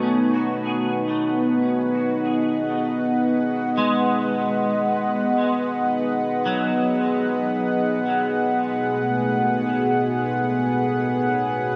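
Set in a vast, echoing space with a long cathedral reverb, this serene ambient fragment from a longer piece rests on a single Badd9 chord held by a mellow, detuned analog pad with slow attack and long release, sitting up front with chorus. A bright, twangy clean electric guitar picks arpeggios through ensemble chorus and diffuse ambient delay until 8.0 s, while a tense, string-like bowed drone with vibrato and its own reverb sustains alongside for the full 11.8 seconds.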